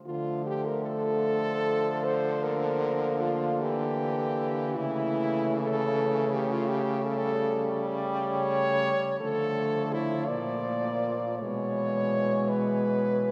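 Four French horns enter together at 0.1 s in an elegiac, melancholic classical piece in D minor, moving in a slow, rubato 6/8 at roughly 46-57 BPM. An up-front, close-miked horn with a warm tone and light vibrato carries the melody, over a dark, smooth-topped second line and two clear horns: a distant, roomy accompaniment with light vibrato in the background and an up-front bass with vibrato. The quartet sits further back in a wet cathedral reverb with a long 6.3-second decay, and harmonies drift from Dm through A7/C# and Bb before the excerpt breaks off on E/B at 11.4 s.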